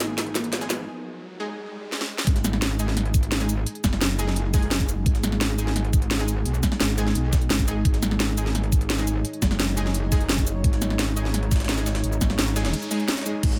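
Straight 4/4 energy drives this dark, futuristic slice of technical drum and bass. An up-front, layered kit brings a cracking snare, crisp hats, cabasa and crash cymbal, shadowed by a very quiet, gritty jungle-style sampler kit with a pitched-up, high-tuned snare. The opening build-up combines drum fills, an electronic riser and swell, and filter sweeps on a boxy felt-muted upright piano, whose brief arpeggios carry audible action noise, while a distant, biting string section adds lush bowed vibrato for under a second. At 2.3 s the drop arrives with a knocking electronic kick, while the aggressive, metallic FM wobble bass, present from the start, distorted and sidechain-pumped, holds the low end up front. Throughout, a deep, moody sawtooth pad sustains chords in the background with chorus and reverb, and a bold, punchy orchestra-hit-like synth stab with a noise layer sits in the background with reverb and delay. 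A noise sweep near the close and a high-passed digital ambience round out the futuristic atmosphere.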